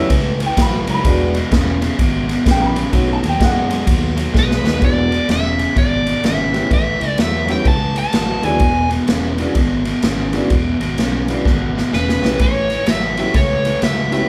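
Heard as a band playing live in one room with a moderate large-studio reverb, this excerpt of a rollicking, laid-back electric blues shuffle rides on an airy, polished big-band drum kit up front, with a punchy kick, ride cymbal and a medium-tuned snare. A bright, biting overdriven guitar with spring reverb picks a low riff, while a fingered electric bass sounds direct and amped and a clear upright piano adds woody, boxy accompaniment. A second overdriven guitar, warm and up front, picks the melody from 4.4 s over a drum fill and returns at 11.9 s.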